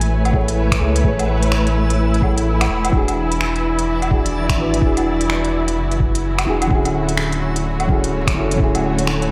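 Ghostly and nocturnal, this swung future garage excerpt sets a soft felt-muted upright piano with tape echo over veiled, con sordino strings holding lush chords from Amaj7 through E9 to Dmaj9#11, both riding sidechain pumping alongside a round, up-front sine sub bass that pumps with them, while crisp hats, finger snaps and woodblock from a roomy electronic kit and a muffled, pitched-down kick entering at 0.3 seconds drive the groove and a faint reversed granular texture swells in the background, the whole dreamy mix soaked in plate reverb and vinyl crackle.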